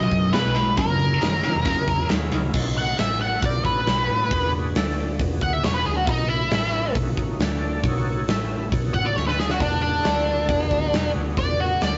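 Blues rock with a southern rock lean, this swaggering, raunchy clip from a longer piece moves at 136 BPM in a straight 4/4 over a progression centred on B7 that mixes dominant-seventh and power chords. A tight, bright, double-tracked distorted guitar riff opens alongside the dark, up-front octave-fuzz lead with wah, which breaks into a solo at 2.5 seconds as the riff guitar stops. Underneath, a gritty, overdriven tonewheel organ holds sustained chords in the background through a slow rotary speaker with key click, a round, foam-muted fingered bass anchors the low end, and a huge, punchy arena drum kit with bright cymbals and sampler grit sits up front, adding a fill at 9.2 seconds, all in a rough rehearsal-room recording with stone room reverb.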